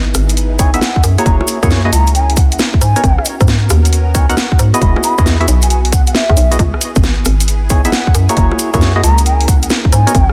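A dense, heavily limited modern mix with light reverb carries this moody, bouncy two-step UK garage excerpt at 135 BPM, its swung sixteenths riding a C#m9, F#7, G#m11 and Emaj9 progression. A punchy, knocking FM bass sits up front with tube saturation, while a tight layered electronic kick, a garage kit of bongos, bright hi-hats, rim clicks and a cracking snare, and grainy maracas in the background drive the groove. A silky, warbling string machine pumps softly in the background under ensemble chorus. From 0.6 s a pure, distant wooden flute with vibrato and digital delay carries the melody, and percussive organ-like stabs, chorused and tape-tinged, add their own delay echoes.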